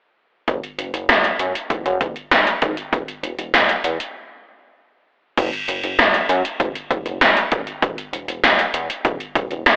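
Punchy 80s electronic pad drums drive a straight 4/4 pulse at 98 BPM, with gated snare, metallic hi-hats and crashes sitting up front in a tape-warm, small-room sound. A retro, glossy chorused synth bass with tube saturation carries the low end, blending pulse and sawtooth tones into a mellow, sustained line. This wistful, nostalgic synth-pop fragment passes through a break at 4.2 seconds into a new section at 5.4 seconds, all heard through a blown-out, overdriven, telephone-like recording bathed in echo-chamber reverb.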